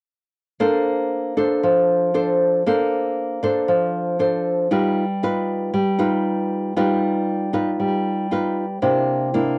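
Relaxed and romantic, this short bossa nova excerpt, cut from a longer piece, features a lone nylon-string guitar playing in a straight 4/4 feel. The guitar sits up front with a full-bodied, classical tone, fingerpicked across a range from C3 to C5, and it carries a cassette tape coloring. It plays from 0.6 to 9.6 seconds, moving through a Bbmaj9 chord, then a Gaug7 at 4.7 seconds and a C9 at 8.8 seconds. Light reverb surrounds the instrument, and the whole thing has the intimate character of a home recording made on cassette.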